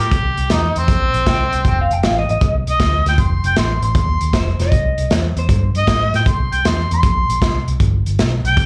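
A mellow harmonica carries the melody up front in this soulful, gritty electric blues shuffle, its scooped notes, light vibrato and jazz-tinged phrasing sweetened by a slapback echo. Beneath it, a vintage muted fingered electric bass gives a dark, round, foam-muted bottom, while a crunchy breakbeat drum kit sits up front with a tight kick, a medium-tuned snare and hi-hat, its saturated sound rolled off at the top. An electric guitar through a small old amp adds a slightly broken-up, lo-fi second line from 1.3 to 5.6 seconds, picked and also treated with slapback echo. The swung groove moves through C7 and F7 before settling back on C7 and touching G near the close. A small club reverb gives the feel of a live gig heard through the venue's PA, and the clip is cut from a longer piece.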